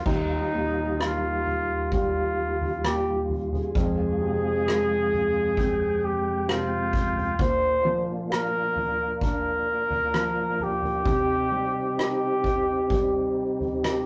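In a straight 4/4 at 65 BPM, this heartfelt, tender pop ballad excerpt in Eb major sets an up-front, softly attacked flugelhorn melody with light vibrato over an intimate baby grand piano whose action noise is audible, a mellow, dark tonewheel organ with key click, chorus vibrato and fast rotary speaker holding sustained chords, and a distant, roomy drum kit played with soft mallets and a boomy kick, moving through Ebadd9, Fm, Bb and Cm in a rough rehearsal-room recording with a wet studio reverb.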